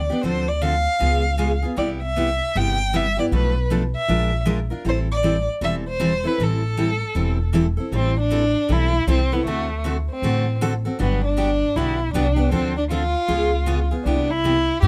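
Fiery and swinging, this short cut from a longer jazz manouche piece moves at 156 BPM in 4/4 with a swung eighth-note feel, set in A minor and tuned a touch high at A4 = 442 Hz. A single bowed violin carries the melody with a soft attack, expressive vibrato and sliding portamento, its tone warm and singing. Beneath it, a pizzicato upright bass with gut strings gives a woody, thumpy, dark pulse, while a picked jumbo steel-string acoustic guitar fills in the accompaniment with a bright, full-bodied sound. The same strain plays twice, starting again at 7.9 s, with harmony that drifts through colourful chromatic moves such as Dm7, C#7 and Cmaj7, a Bb7#11 settling onto Am7, and later D7 resolving to Gmaj7. All three instruments sit up front in a close, detailed recording with little reverb, so every string and bow stroke comes through clearly.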